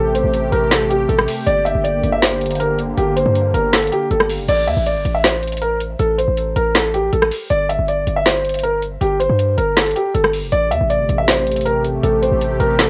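This dark, melancholic trap instrumental moves at 159 BPM in 4/4 with a half-time feel, its electronic drum kit entering at 0.2 seconds with a woody snare, metallic hi-hats, rim clicks and crash cymbal, all sitting up front. Beneath it, a hard-hitting 808-style bass gives punchy, heavy sine tones with a noise layer, a fast attack and a decaying tail, ranging from F1 to G2. A dark, mellow concert grand piano carries the melody between G4 and E5 in A phrygian, its sound shaded by a low-pass filter, tape echo and cassette coloring. A sweeping resonant pad of detuned sawtooth tones with chorus and a filter swell holds slow-attack chords at first, drops out at 4.5 seconds and returns at 10.5 seconds. The harmony moves through Am7, Gm, Am and a rootless Fsus2 before settling back on Am7, all in a dry, homemade cassette sound, and the recording is cut from a longer piece.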